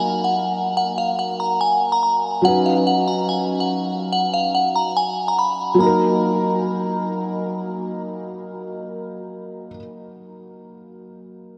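Drenched in a huge, dreamy reverb with a 7.6-second tail, this menacing, cold hip hop fragment in Eb minor runs at 143 BPM with a half-time feel, as a crystalline FM synth bell with chorus, phaser and delay carries the melody up front until 7.0 seconds while a soft, felt-muted upright piano, mellow and intimate with audible action noise, accompanies through 11.6 seconds over chords moving from Ebm to Badd9 and back.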